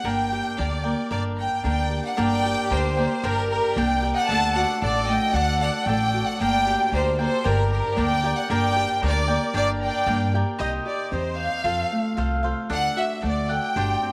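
Mexican folk in the mariachi style, this passionate, dramatic excerpt moves at 114 BPM in 2/4 in G harmonic minor, with a biting, intense violin section carrying the melody up front and a smooth, even second violin line joining in the background from 1.6 to 10.3 seconds. Crisp picked cavaquinho and a ringing fingerpicked Celtic harp fill out the accompaniment, while a woody pizzicato upright bass sits prominently beneath. A moderate plate reverb gives the ensemble a spacious glow as the harmony shifts from G minor to D and back to G minor, then to C minor and F before returning to D.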